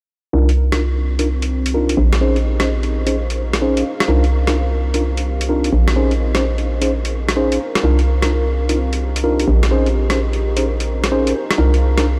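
A skippy, swung two-step groove of gritty, pitched-down sampler hi-hats and rim clicks drives this soulful UK garage excerpt, with a hollow, bouncy FM bass sitting up front beneath it. Mellow tine electric piano stabs, softened by a low-pass filter and trailed by delay, trace a loop of Cm11 and Bbm11. A deep, moody chorused pad drifts in the background from 1.0 seconds, and the whole mix is soaked in a huge, dreamy reverb.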